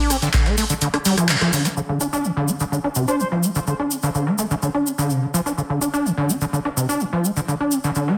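A squelchy, distorted acid bass riff dominates this driving, trippy acid house excerpt, its resonant sawtooth plucks thickened by tube saturation, subtle chorus and delay. A punchy, tape-warm analog drum machine with handclaps, hi-hat and rim click hits up front only until 1.7 s, while a compressed, pitched-up breakbeat kit with a high-tuned snare, hats and shaker runs in the background beside a grainy, bright cabasa heard close and dry. At 3.1 s an airy, reedy concert flute surfaces briefly on a tongued C5 with digital delay, and the mix sits in a moderate room reverb under a dense, heavily limited master.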